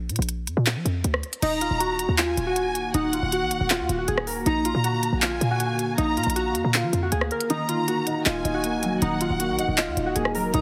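Eerie and melancholic, this trap-flavored hip hop cut from a longer piece moves at 158 BPM in a half-time 4/4 feel, centered on E-flat harmonic minor and swaying between B-flat and E-flat minor chords. It opens on a brief break where a punchy, tight 808-style bass with a sine body and a noise layer sits up front alongside an electronic trap kit of crisp hi-hats, handclaps, rim clicks and crash cymbal. At 1.4 seconds a warbling, detuned lo-fi synth keys part takes the melody, its nostalgic pulse-and-sawtooth tone colored by chorus, phaser and a filter sweep, while a distant, lush violin section bowed with vibrato carries a high second line through delay. A glassy, ethereal FM pad with slow attack and long release drifts in soon after, holding mellow sustained chords in the background. At 7.5 seconds the kick drops out briefly as a dark concert grand piano enters with smooth, vintage, short-sustained accompaniment reaching into deep bass. 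The whole mix has light reverb and a heavily compressed, radio-like sound.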